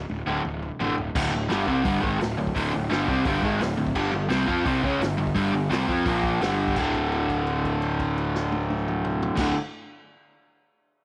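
Garage rock at a straight 171 BPM, rowdy and swaggering and cut from a longer piece, opens with a growly, bright fuzz bass, joined almost at once by a drum fill on a small-room vintage kit with dark cymbals and a punchy kick, before the double-tracked, overdriven guitar riff arrives up front at 0.3 seconds over D5, G5 and Bb5 chords, moving to a held note at 6.8 seconds under light studio reverb.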